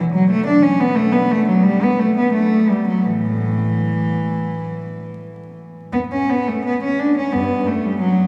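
In a rubato 4/4 pulse hovering around 81-92 BPM, a solo bowed cello unfolds a serene, flowing baroque-style suite movement, moving between G2 and D4 with a rich, reedy gut-string tone played in period style. The cello sits close and up front, bathed in a long cathedral-like reverb alongside small-room ambience and vinyl crackle. The brief fragment, cut from a longer piece, shifts into a new section at 5.9 seconds before breaking off at 8.3 seconds.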